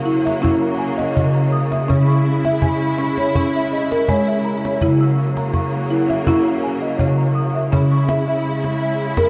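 This short excerpt of gentle, hypnotic world meditative music sets a woody, up-front marimba playing arpeggios against lush, bowed string chords bathed in shimmer reverb and a snappy, close cajon entering at 0.1 seconds, all wrapped in a wet church reverb and the warbling pitch drift of worn cassette tape as the harmony rocks between C#m and F#/C#.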